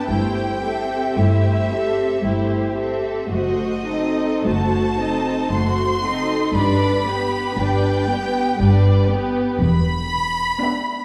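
An expressive violin section carries the melody of this slow, serene excerpt from a romantic movement for string orchestra. Its rich, close vibrato sits above a smoother, more distant second violin line, in G major and 3/4 with a rubato feel at 50-61 BPM. Up front, the violas supply an even, bowed accompaniment, while lush cellos in the background and dark, woody double basses hold the bass until 10.4 s, as the harmony moves through Am7/G, F#dim7, G and Em7 in a wet scoring stage reverb heard from further back in the room.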